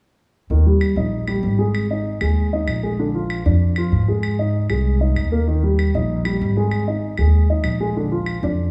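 Heard in a moderate recital-hall reverb with small-room ambience, this brief, lively and sunny Afro-Cuban jazz passage moves at a brisk 193 BPM in straight 4/4, in Eb major, cycling through Eb, Absus2, Bb7 and Abadd9 harmonies. Up front, a dark, mellow concert grand piano with a smooth, vintage character and deep low end carries the accompaniment, while a growly, pizzicato upright bass with steel strings sits just as close beneath it. Clicking claves, woody and close-miked, enter at 0.8 seconds and keep time quietly at a low level.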